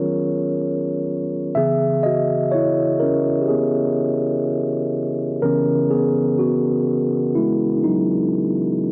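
A mellow, clean tine electric piano sits up front and plays alone through this 8.9-second fragment of a longing, moody R&B piece at a slow 62 BPM in 4/4, moving from Ebm9 to Dbm9 at 1.6 seconds and spanning Db3 to Fb5, its cassette-tape colouring and light reverb giving the home recording an intimate, slightly sharp-tuned (A4 = 443 Hz) character.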